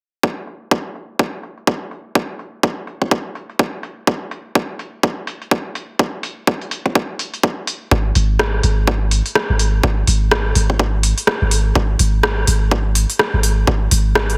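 A swung 4/4 groove drives this sparse, hypnotic minimal techno fragment: a tight, tape-warm electronic kick and a garage drum kit of crisp hi-hats and rim clicks sit up front under a filter sweep on the drums, both re-recorded in a large room yet kept fairly dry overall, until a deep, punchy sine sub bass with a pitch-drop attack arrives at 7.9 seconds, pumping with sidechain compression.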